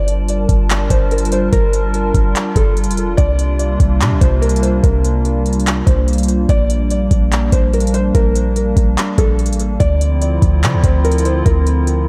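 Spacious and hazy, this atmospheric cloud-rap excerpt moves in a half-time feel, with a felt-muted upright piano carrying a soft, intimate melody through delay, its audible action noise set against a hollow, flute-like pad that sustains chords under chorus. A clean, boomy 808-style bass sits up front alongside a smooth R&B drum kit of soft kick, handclaps and hi-hat, the kit tape-warm and re-recorded in a small room. The dreamy mix is soaked in a lush hall reverb as the chords move from Gm7 through C7sus4 and Bb6 to Dm7.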